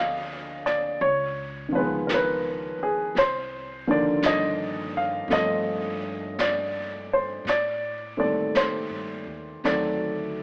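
A short, romantic late-night jazz ballad at a slow 56 BPM opens with an upright piano and a pizzicato upright bass sounding together from the start, the swung eighths giving the 4/4 pulse an unhurried lilt. The piano sits up front, polished and woody with a short sustain, carrying the accompaniment across a range from D3 to F5 over rich, shadowy harmony that moves from Dm7b5 through Db9 and a long-held Cm11 to Am7b5 and finally D7b9. Beneath it, the bass is thumpy and woody, its steel strings giving a warm low foundation between C2 and A2, though it stays well back in the balance. At 0.7 s a brushed drum kit joins on hi-hat and a high-tuned snare, sounding distant and roomy as if heard from across a studio room. Light reverb and an AM-radio character wrap the whole fragment, lending it an after-hours intimacy before it breaks off at 10.4 s.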